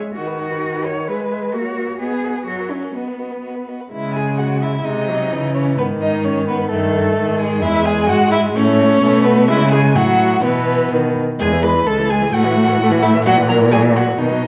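A reverberant recital hall surrounds this lively, spirited passage from a quick classical-period movement for string quartet, taken from a longer piece and moving at 129 BPM in a straight 2/4, starting in B major, shifting to C# minor at 3.9 s and settling in E major from 7.6 s. A warm, somewhat distant first violin carries the melody with vibrato and expressive portamento, while a rich, close second violin shapes a smooth, even second line. An up-front viola adds steady bowed accompaniment, and a cello entering at 0.1 s grounds the bass with vibrato, slides and expressive phrasing.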